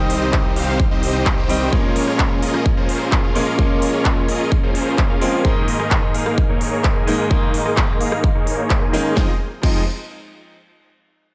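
A bright concert grand piano and huge, detuned supersaw chords open this powerful, anthemic festival progressive house excerpt in F minor at 129 BPM, both pumping with sidechain and trailed by delay, as a filter sweep runs on the supersaws until 9.2 s over chords moving from Cm through Bbm7 and Absus2 to Fm7. A thick, chorused saw bass sits in the background, dropping out at 1.7 s and returning at 9.2 s, while a punchy, tape-warm electronic kick drives up front from 0.3 s. The overdriven dance kit adds a punchy snare, crisp hi-hats, handclaps, rim clicks and crash cymbal, with studio reverb on the drums and a light digital ambience around the mix.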